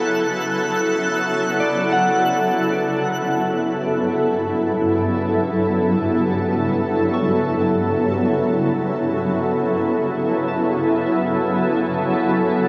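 At a slow 54 BPM in straight 4/4, this melancholic, spacious ambient excerpt rests on an up-front, ethereal pad of detuned, octave-up shimmering chords moving from Bm7 to Gmaj7 and finally A, while a twinkling granular texture sparkles in the background until 2.7 seconds, and a dark, slightly broken-up electric guitar enters at 1.6 seconds with fingered arpeggios soaked in spring reverb and diffuse delay, fading in from 2.7 seconds, all set in a huge, wet reverberant space.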